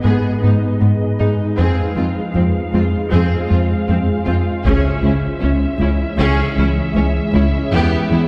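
This brooding, futuristic cinematic cue blends orchestral and electronic scoring at 78 BPM in a straight 4/4, taken from a longer piece and built as a build-up with a filter sweep running through its 8.3 seconds. Two lush violin sections carry the music: one, filtered and symphonic, sings the melody with vibrato, while a smooth-topped studio section plays a second line beneath it, supported by an intense, lightly vibrato viola section in accompaniment. An ethereal ambient pad holds sustained chords with an octave-up shimmer, chorus and its own reverb, while a mellow, harp-like synth pluck ripples through arpeggios in the background, colored by chorus and tape echo. Underneath, a round, dark analog bass riff and a studio cello section anchor the low end. A heavy-sticked taiko ensemble appears in the background only from 4.7 to 6.2 seconds, while across the cue the harmony moves through G#m, Fm, C#m and Em, all set back in a wet concert hall reverb.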